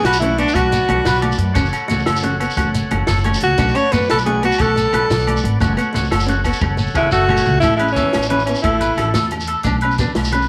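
Warm and sunny, this highlife guitar band excerpt rolls along at 119 BPM in a straight 12/8, set in A major, with chords moving from Bm and F#m to Aadd9 and Bmadd9. Up front, a breathy alto saxophone carries the melody with light vibrato in a jazz style, and a clear tenor saxophone with scooped notes joins further back on a second line from 7.0 seconds. A bright, twangy clean electric guitar picks arpeggios through tape echo, while a fingerpicked nylon-string guitar with fresh strings and a lightly overdriven tonewheel organ, its key click and slow rotary speaker audible, sit in the background until the organ drops out at 7.6 seconds. Underneath, a woody, growly pizzicato upright bass anchors the groove beside a compact, dry cocktail drum kit with a high-tuned snare and tight kick, which plays a fill from 6.6 seconds into the second section. Ringing, hard-hand congas, saturated agogo bells and a grainy, distant shekere fill out the percussion, all wrapped in light studio reverb.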